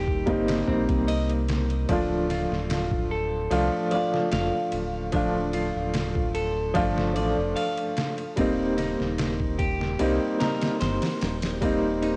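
A cassette home recording with a snug booth ambience opens this cinematic, smoky trip hop passage at 74 BPM in D phrygian, cut from a longer piece and moving from Eb6 to Dm at 1.9 s and back to Eb6 at 8.4 s. A clear, woody upright piano sits up front with tremolo and tape echo, while a bright, twangy clean electric guitar picks arpeggios through tape echo and vintage 12-bit sampler grit. Underneath, a round, deep analog bass with a fast attack and dark sustain anchors the low end, and a pitched-down, compressed sampler-style drum kit enters at 0.1 s with a thumpy kick, a medium-tuned snare and ride cymbal, its gritty, tape-warm sound re-recorded in a small room.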